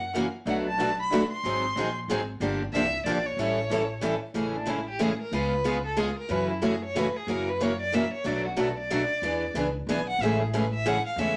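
Acoustic string swing in the jazz manouche style, charming and lively, in a swung 3/4 lilt, this brief excerpt cut from a longer piece sets a smooth, vibrato-rich bowed violin up front over two picked parlour guitars, one bright and forward, the other mellow and set back, with a woody, thumpy pizzicato upright bass on gut strings underneath. After an opening passage, the violin takes a solo from 4.4 seconds to the end at 11.4 seconds as the harmony moves through seventh chords to settle on Amaj7. A wet but short studio reverb gives the small ensemble an intimate, lively room sound.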